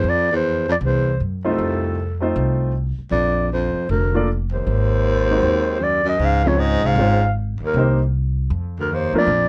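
A dry, close-up recording captures this relaxed small-group swing-and-bop excerpt at 156 BPM, with a dark clarinet carrying the melody in a soft subtone with light vibrato and scooped notes. Beneath it, a breathy, whispered baritone saxophone plays a low second line, and a woody, growly pizzicato upright bass holds down the bottom. A warm grand piano, its action noise audible, joins at 1.4 seconds to comp through the shifting chords.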